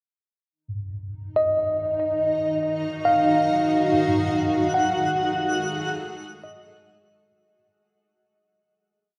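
A huge, wet ambient reverb bathes this short, reflective piece, giving it a spacious feel. A worn, slightly out-of-tune tine electric piano opens at 1.4 seconds with scattered arpeggio notes up front, lightly overdriven and trailed by tape echo. A mellow, blurred granular cloud pad fades in alongside it, holding full-bodied, slowly shifting chords, while a tense, string-like bowed drone with vibrato sits in the background beneath. At 4.4 seconds a twinkling granular texture adds a held high note with an octave-up shimmer. The harmony moves from one minor added-ninth chord to another as the whole piece fades out from 3.9 seconds.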